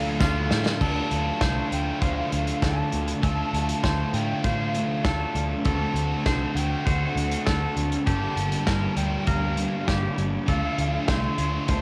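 This brooding, melancholic excerpt of shoegaze and dream pop rock opens at 0.0 seconds with an airy silver concert flute melody, clean, twangy electric guitar arpeggios, two picked electric guitars playing riffs, and a round, foam-muted picked electric bass. A loose indie drum kit comes in at 0.2 seconds with a fill. At a straight 99 BPM in 4/4 and in D minor, the harmony moves from Dm through Dm7 to D7 at 5.7 seconds, then on to Gm7 and back to Dm7. The flute sits high above the band with an unsteady, tongued vibrato, cassette grain and tape echo, while the bright arpeggio guitar adds subtle chorus and its own tape echo. Beneath them, a biting overdriven guitar with reverse reverb and a dark fuzz guitar with distortion and analog chorus carry the riff over the amped, punchy bass, and the drums sit up front with dark cymbals, a medium-tuned snare and a kick. It all comes through as a home cassette recording with light reverb and small room ambience.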